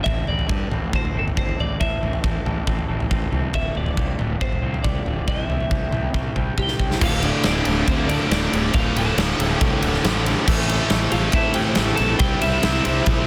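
A dense, heavily limited modern mix with light reverb frames this brooding, dark quiet-loud alternative rock piece in D minor at 138 BPM, driven by a huge arena drum kit with bright cymbals, a punchy kick and a pumping room sound, under a round, fuzz-soaked fingered bass. A clean, twangy twelve-string electric guitar carries the melody through analog delay while a lo-fi, slightly broken-up guitar through a small old amp plays arpeggios, moving over Am, Dm7 and C until a drum fill at 6.1 seconds. At 7.0 seconds the arpeggios stop and three picked riff guitars enter: a tight distorted one, a very quiet fuzz guitar, and a dark, double-tracked overdriven part.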